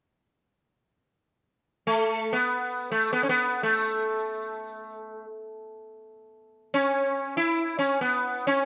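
This is a short excerpt of Indian classical music in free time, unfolding with an unmetered flow that feels serene and meditative. A solo sitar carries the melody, entering at 1.9 seconds and playing until 8.7 seconds within a range from A3 to E4. Its acoustic, plectrum-plucked tone is bright and buzzing, with sympathetic strings adding a shimmering halo around each note. The instrument sits up front in a dry, open-air recording with little reverb, so every detail of the string's sound comes through clearly. Tuned to A4 = 437 Hz, the passage has a calm, contemplative character suited to quiet reflection.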